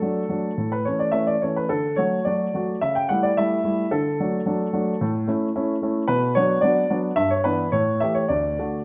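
A classical-period piano sonatina in straight 4/4, graceful and playful in mood, cut from a longer piece and lasting about 8.8 seconds. A baby grand piano plays solo throughout, its tone open with a long sustain and placed up front, spanning a range from D2 to G5. The harmony moves between tonic and dominant chords before turning to Bm, then Em7/G and A7, and settling back home on D at 8.3 seconds. Close, detailed microphones capture the instrument, while a moderate recital hall reverb lends a sense of space around the notes.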